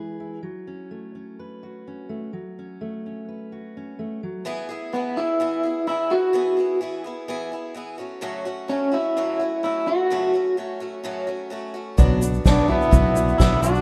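Hopeful and uplifting, this indie folk piece opens with a dark, full-bodied fingerpicked steel-string acoustic guitar, which gives way at 4.4 seconds to a bright, boxy picked swing-style acoustic guitar while a twangy, slightly broken-up electric guitar through a small old amp carries the melody up front with tremolo and tape echo, before the arrangement builds at 12.0 seconds with a woody, very quiet upright piano, a round fingered electric bass, a punchy soft-mallet drum kit, a grainy egg shaker and, moments later, a close-miked trumpet with light vibrato playing a second line, in a rough home demo mix with light reverb and small room ambience.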